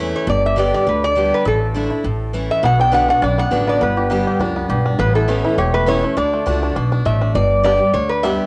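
A nasal, metallic lap resonator guitar carries the slide melody up front in this rustic, virtuosic bluegrass excerpt at a brisk, swung 204 BPM, over bright picked steel-string acoustic guitar with audible finger squeak and a woody, thumpy pizzicato upright bass, while a mellow, twangy banjo joins the melody at 2.6 seconds, with cassette-tape colour on the resonator and banjo, light reverb and a homespun studio feel as the chords move through G, A, Bm and D.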